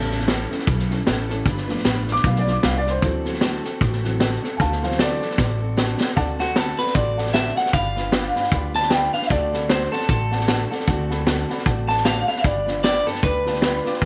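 Rockabilly with a rollicking, rowdy mood, this excerpt moves at 153 BPM in 4/4 with a swung eighth-note feel in D mixolydian, its chords shifting among A7, G7 and D7. A dark, boxy upright piano takes a solo over the opening section until 6.2 seconds, backed by a full-bodied, picked steel-string acoustic guitar sitting in the background and a woody, thumpy pizzicato upright bass on gut strings. The vintage drum kit sits up front with a high-tuned snare, punchy kick and hi-hat, its rolled-off top giving it a mid-forward character, and it plays a fill just before the second section. At 6.4 seconds an electric guitar through a small old amp takes the melody, bright, twangy and slightly broken-up, trailed by tape echo. Light reverb and studio ambience frame the band, and the passage is cut from a longer piece.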